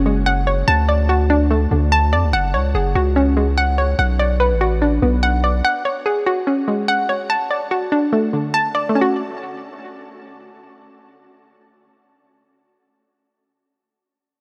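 With a moderate dose of huge ambient reverb, this tense, cold drill fragment at 145 BPM in half-time and F# minor sets a hollow, bouncy square-wave pluck playing bright arpeggios through chorus and tape echo until 13.3 seconds over a deep, sine-toned 808-style bass whose long decaying notes sit up front until 5.6 seconds, as the harmony moves from F#sus2 through D and Bm before settling on F#m at 9.0 seconds.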